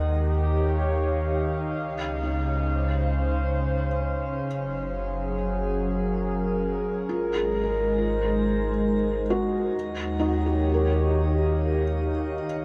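Steeped in a huge, wet reverb with a cassette-tape grain, this luminous, peaceful ambient passage, cut from a longer piece, drifts at 68 BPM in 3/4 over chords moving from Eb7 through Dbmaj7, Gbmaj7 and Ab7. A warbling, detuned, nostalgic pad sits up front with slow-attack sustained chords, thickened by chorus and shimmer reverb, while a round, deep sine sub bass holds the low end throughout. At 2.2 s a soft, felt-muted upright piano enters with intimate, dark arpeggios, its action noise audible beneath tape echo and shimmer reverb.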